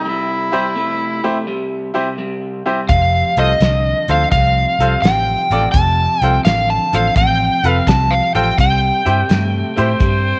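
A gritty, overdriven harmonica with tongue slaps and scooped notes opens this laid-back, swaggering electric blues shuffle at 84 BPM over a slightly broken-up guitar riff with lush chorus; a brilliant, woody upright piano joins at 0.5 seconds, and at 2.9 seconds a dark, up-front slide guitar carries the melody as a round, foam-muted bass and a punchy soul drum kit with a fat snare arrive, the harmony moving from C to F and back to C before the harmonica returns at 9.8 seconds, all under light reverb in this short cut from a longer piece.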